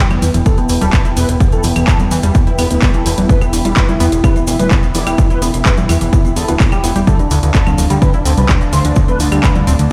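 Heard through a big sound system in a bare stone room with light reverb, this dark, driving melodic techno excerpt moves at 127 BPM in E phrygian, shifting from Em to Dm at 7.1 seconds. A punchy analog drum machine of claves, congas, handclaps and hi-hat, a grainy egg shaker in the background, and a thick, detuned sawtooth bass that pumps with sidechain open the excerpt, and an overdriven, up-front kick arrives at 0.5 seconds. Above them, a smooth, expressive lead with vibrato, chorus and tape echo carries the melody, while an eerie, inharmonic FM bell adds a very quiet second line, nasal sequenced arpeggios pulse in the background, a moody pad with 12-bit sampler grit holds the chords, and bold, brassy stabs join from 1.2 seconds.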